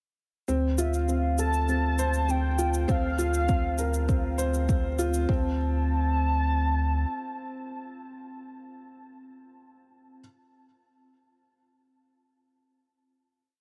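A dark, woody upright piano stands out in this moving, intimate piece of piano and strings electronica, playing an eight-step arpeggiated riff between C4 and C5, up front, with audible action noise and long sustain. The complete piece sits in D minor at 100 BPM in a straight 4/4, building over Dm7 and Bbadd9/D before arriving on a D5 final chord at 5.3 seconds. A round sine sub bass holds a sustained D2 root with sidechain pumping, while a restrained electronic shaker keeps a gentle pulse. A velvety, detuned synth lead with chorus and vibrato sings motif-based phrases between E5 and A5. A deep electronic kick adds a four-on-the-floor beat from 2.9 to 5.4 seconds, and light reverb surrounds the sound.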